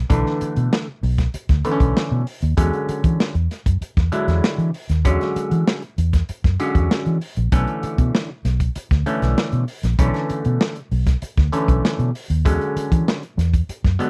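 A dark, round, foam-muted fingered electric bass opens this hypnotic, sly funk excerpt at 97 BPM in B dorian, joined at 0.1 seconds by a gritty, saturated breakbeat kit with a tight kick and medium-tuned snare, and by stringy, overdriven clav stabs through a phaser, all up front in a dry, close 1970s-style studio sound as the harmony moves between Bm11 and E13.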